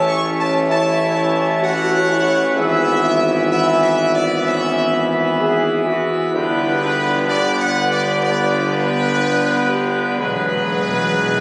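A slow, straight 4/4 pulse at 64 BPM carries this majestic, triumphant ceremonial fanfare, a short classical passage cut from a longer piece. Up front, a clear, close-miked trumpet section sings the melody with light vibrato, set against the brilliant full organ, whose mixtures and romantic voicing give the sustained chords their grandeur. Behind them, a dark trombone section and a mellow, tight French horn section hold sustained chords, while a warm solo tuba anchors the bass, all three sounding distant and roomy with light vibrato. The harmony moves from A to E/G# and G before settling on Eadd9 at 10.2 seconds, where the timpani, heard only in a brief stroke at the start, returns with an articulate fill on hard mallets. A wet church reverb with a long 3.5-second tail surrounds the ensemble, and the recording was captured on a phone in the room, with studio reverb added.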